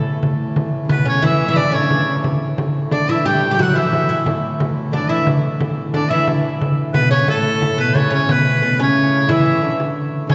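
A reedy, breathing harmonium drone opens this rustic, festive medieval dance in A mixolydian, joined almost at once by a small, close frame drum and the rich, gut-string tone of a bowed, fretted viola da gamba in the background, moving at 119 BPM in 6/8. By 0.9 s a bright, up-front shawm carries the folk-style melody with vibrato, sounding distant and roomy, while a woody, plectrum-plucked oud with double strings adds a deep second line. The wet church acoustic lends a long, reverberant bloom, and the music moves into a new section at 8.3 s.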